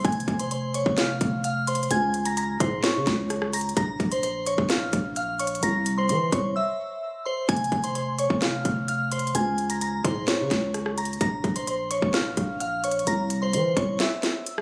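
Trap-flavoured hip hop with a melancholic, eerie half-time feel, cut from a longer piece, where a glassy synth bell with chorus, phaser and a low-pass filter carries the melody over a growling, buzzy 808-style bass and an up-front electronic drum kit of hard-clipped kick, sharp snare, rim click and crisp hats, all sounding as if captured on a phone in a club room, with brief breaks at 6.6 and 14.0 seconds.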